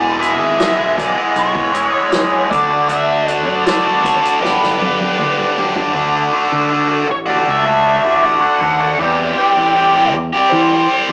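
A double-tracked, overdriven electric guitar riff with phaser opens this hypnotic, hazy psychedelic rock excerpt at 79 BPM, set up front alongside a biting lead guitar melody through wah and overdrive and a dark, round fretless bass. A vintage acoustic kit with a punchy kick, snare, hi-hat and toms joins at 0.2 seconds over chords moving from E to D to G, and plays a fill before dropping out at 5.9 seconds as the harmony shifts to Dmaj7 and then C6. The whole track has a rough rehearsal-room sound with tube saturation, a small-speaker quality and wet studio reverb.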